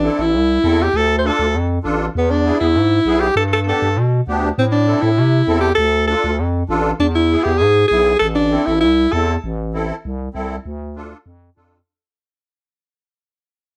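A straight, driving cumbia groove in 4/4 carries this fiery Latin fragment: a bright, punchy alto saxophone with vibrato and slapback echo leads up front until 9.4 seconds, a reedy, shimmering musette accordion plays the accompaniment, and a growling, thick FM bass anchors the low end, all in light reverb, before the recording fades out between 9.4 and 11.9 seconds.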